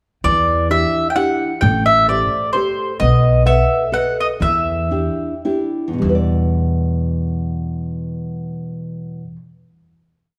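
A round, double-strung mandolin carries a motif-based melody up front in this wistful, passionate Italian folk serenade in E minor and 3/4 with a light swing, joined by fingerpicked classical nylon-string guitar playing oompah bass notes and chord figures and woody pizzicato upright bass on root and fifth, moving through Em7, Am7 and B7 at 101-132 BPM, slowing from 3.0 to 6.0 seconds, before the mandolin stops at 5.4 seconds and the guitar and bass settle into a final chord inside a moderate recital hall reverb.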